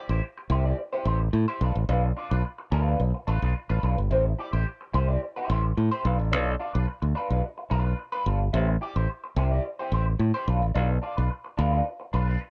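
A bright, fingered electric bass sits up front from just after the first moment, its direct tone carrying the low end of this danceable disco groove in a straight 4/4. Beside it, a dark, slightly broken-up electric guitar plays a picked, compressed accompaniment, colored by wah and analog chorus and placed just as close, though quieter in the mix. The harmony alternates between Am7 and Bdim throughout, giving the passage a glamorous sheen. The sound is dry and close in the manner of a 1970s studio, with a touch of digital ambience around it. Both parts play together from the opening moments through about 12.4 seconds, as this short cut from a longer piece stays in a single section.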